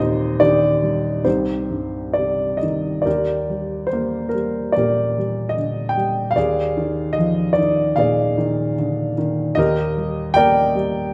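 A dark, boxy baby grand sits up front in this lyrical classical solo, its mellow tone and audible action noise giving an intimate, reflective feel as it moves with rubato between 63 and 77 BPM in 4/4, opening in C minor on an Eb6 before a Cm chord. At 3.1 s the harmony turns to Eb major, moving through Ebmaj7, Bb7/Eb and back to Ebmaj7 across a range from C2 to G5. A wet recital hall reverb surrounds the piano in this short passage cut from a longer piece, which stops at 11.1 s.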